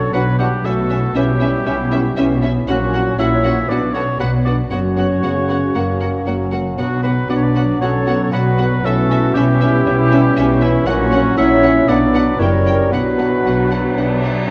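Built on distant French horn chords, ringing concert harp arpeggios, a woody cello section and a clear double bass section, this magical, mischievous cinematic excerpt from a longer piece weaves together second lines from an airy flute ensemble, a warm oboe, a smooth-topped clarinet and a floating studio violin section, with a pure viola section and a mellow, roomy bassoon in accompaniment, while an intimate chamber violin section carries a sul tasto melody from 0.1 seconds, all bathed in wet scoring-stage reverb and the warbly pitch drift of worn old cassette tape.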